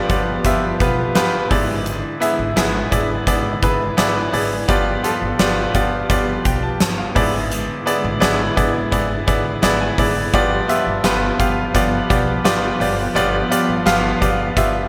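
Awash in a lush 2.5-second hall reverb with a big arena sound, this dramatic, nostalgic 1980s-style pop excerpt at 85 BPM puts a brilliant, up-front grand piano with slapback echo over mellow, chorused string-machine cellos in the background, a woody, thumpy pizzicato upright bass and a polished, airy arena drum kit with a fat snare and punchy kick, moving between G7 and E7/G# with a piano fill at 9.3 seconds.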